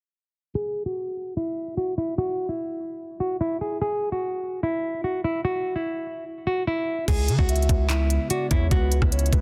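A fingerpicked nylon-string guitar opens the excerpt at 0.6 seconds, playing a small, fresh-stringed melody up front, filtered and treated with delay as a filter sweep runs across it until 7.1 seconds. This is menacing, brooding trap-flavored hip hop at 147 BPM in C# minor, felt in half-time. At 7.1 seconds the music lands on a C#m7 chord as a trap drum kit bursts in with a knocking kick, crisp hats, handclaps, rim clicks and a crash, alongside a distorted 808-style bass that hits heavy and aggressive with a fast attack and a noisy edge. Just after, a soft octave-layered synth lead adds a round, dark second line with vibrato, chorus, phaser and delay, while a warbling, nostalgic tape-like pad sits mellow in the background with slow-blooming sustained chords. Light digital ambience surrounds a dense, heavily limited modern mix.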